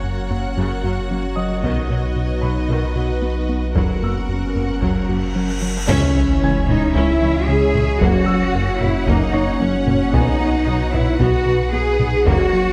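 A moderate scoring-stage reverb surrounds this cinematic hybrid of orchestra and electronics, with a faint mains hum beneath it, in a tense, relentless passage cut from a longer film score at 113 BPM in straight 4/4. From the start, a warm violin section carries a second line over a clear viola accompaniment, a hollow, warbling pad with chorus, and a mellow, distant French horn section holding chords. Underneath, a rubbery, nasal square-wave bass riff sits on a deep, clean sine sub bass, joined at 0.3 seconds by a lush cello section and a harp-like synth pluck playing arpeggios that ring through chorus and digital delay. A boxy baby grand piano adds high texture through its own delay, and hard-stick taiko drums enter at 1.6 seconds, heard from a large, distant room. A huge, dark cymbal swell and sub drop lead into a band accent and impact at 5.9 seconds, where the harmony moves to C#m. 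A focused violin melody enters at that moment with a very quiet double bass section, before the chords return to F# and B.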